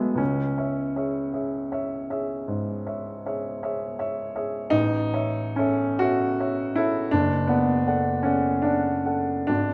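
Moving in a slow, rubato 12/8 at around 44-56 BPM counted in dotted quarters, this brief cut from a longer classical piece has the unhurried sway of a romantic nocturne. A lone upright piano carries everything, its tone woody and open and placed up front, ranging from F#1 up to F#5. The harmony settles first on C#m, shifts to A at 4.7 seconds and then to D/F#, giving the passage a wistful, yearning colour. The tuning sits at A4 = 439 Hz, and a wet recital hall reverb with a 1.5-second decay surrounds the instrument. The whole fragment lasts just under ten seconds.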